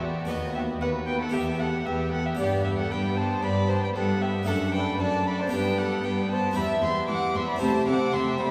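A wet church acoustic, with a reverb tail of about 3.0 seconds, surrounds this lively, festive 8.5-second cut from a baroque-style concerto movement, played at 115 BPM in a straight 4/4 with period tuning at A4 = 437 Hz. Up front, a single dark, nasal solo violin carries the melody high in its register, its gut-string tone touched with a reedy edge. Beneath it, a very quiet chamber violin section also plays the melody in a lower range with light vibrato, while a rich violin section with a smooth top sings a second line. A close-miked, dry Italian-style harpsichord with two sets of strings gives full plucked accompaniment alongside a viola section set in the background. Grounding everything is a prominent cello section on the bass, and the harmony moves through B/D#, Em, G and D/F# before closing on Am7/C.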